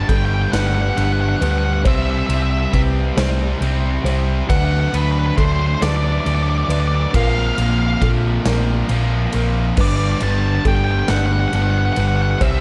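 Hopeful and euphoric, this slow post-rock passage in 6/8 is cut from a longer piece and moves through a broad chord cycle that returns to its opening Gadd9 by 9.8 seconds. A dark, fuzzy octave-fuzz lead guitar carries the melody with slapback echo, over a bright distorted electric guitar riff, a crunchy overdriven guitar riff in the background and a muted, felt-softened upright piano playing intimate arpeggios. A round, hollow-body fingered electric bass sits up front, and a big rock drum kit with punchy kick and bright cymbals enters at 0.1 seconds, all within studio reverb and a dark, warm production.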